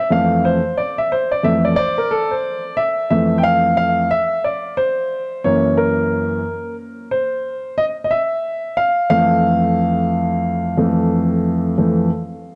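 Hip hop in F major at 90 BPM with a 16th-note swing, this relaxed, mellow fragment features a dark baby grand piano playing alone from 0.0 to 12.6 seconds, ranging from F2 to G5. The piano sits up front with a vintage tone, long sustain, a slapback echo and a moderate plate reverb. A new section begins at 2.8 seconds, and the harmony moves from Fmaj7 to Gb7#11 at 5.4 seconds before returning to Fmaj7 at 8.1 seconds.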